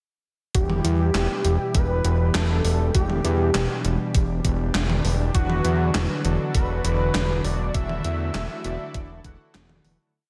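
A dreamy mix soaked in a lush hall reverb frames this driving, moody synthwave piece in E minor, set at 100 BPM in a straight 4/4. From 0.5 seconds, a thumpy machine kick sits up front beside a fat, detuned sawtooth bass playing eighth notes with sidechain pumping. An overdriven, gated 80s digital drum machine adds a backbeat of snare, handclaps, hi-hat and toms, re-recorded in a small room and treated with gated reverb. Behind them, a brassy, evolving analog pad holds sustained chords with chorus and its own pumping motion, moving from Em to Bm/E and then Dadd9/E. Over the top, a thick unison lead with a sub octave and vibrato sings a mellow, motif-based melody through analog delay. At 5.3 seconds, a round, dark synth brass joins in the background with chorused held chords and syncopated pushes tinged by cassette tape, and the track fades out from 6.9 seconds.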